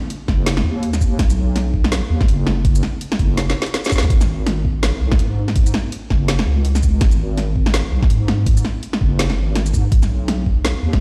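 A deep, dark wobble bass sits up front in this half-time drum and bass excerpt at 165 BPM in 4/4. It blends square and sine tones, detuned and compressed under chorus, with a fast attack and long sustain, moving between F#1 and G#2. The drum kit enters first, at 0.1 seconds, with a woody snare, bright hi-hats and shaker, overdriven and layered, set in studio reverb. A knocking electronic kick with a tape-warm tone joins the bass at 0.3 seconds, and a drum fill arrives at 3.4 seconds. The 16ths swing at 58%, and the mostly dry mix plays as if through a big sound system in a bare stone room, giving a spacious, heavy mood.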